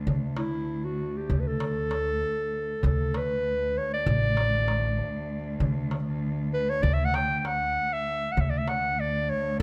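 Warm and passionate, this short excerpt, cut from a longer piece, places a Turkish makam ensemble in 9/8 with a straight feel. A rich, bowed cello holds a low drone from the very start, its single player shaping the sustained tone with vibrato, portamento and a soft attack. Just after, a woody upright bass on plucked steel strings carries the bass line, while a small metal-shelled darbuka adds a crisp, high, compressed and saturated pulse. The mellow clarinet enters at 0.4 seconds as the up-front solo voice, punchy and present in a classical style as it leads the melody. Close, detailed microphones catch each instrument clearly within a moderate recital hall reverb.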